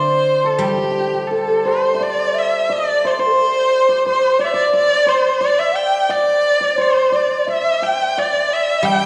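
A straight two-beat pulse carries this pastoral, festive fragment of Chinese traditional chamber music, heard in a resonant recital hall with a generous, churchlike reverb. A clear, nasal erhu leads up front with vibrato and portamento, joined by a shimmering hammered dulcimer on a second line, while a guzheng played with fingerpicks adds silvery, ringing low accompaniment until 2.7 seconds and returns briefly at 8.8 seconds. From 1.3 seconds a breathy, hollow bamboo xiao enters in the background, tongued and played with vibrato, as another second voice.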